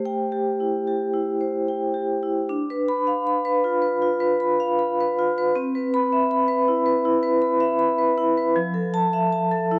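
Reflective and flowing, this contemporary classical piece for solo vibraphone moves at a rubato 79 BPM in 4/4, with the instrument struck by medium hard mallets across a range from F3 to B5, its metallic, ringing tone carrying a medium motor vibrato and sitting up front. The harmony drifts from Am7 through Dm6 at 2.5 seconds and Cmaj7 to Fmaj7 at 8.6 seconds, in a short passage cut from a longer work. A moderate scoring-stage reverb surrounds the sound, which is coloured by worn, warbling old cassette tape with wavering pitch drift.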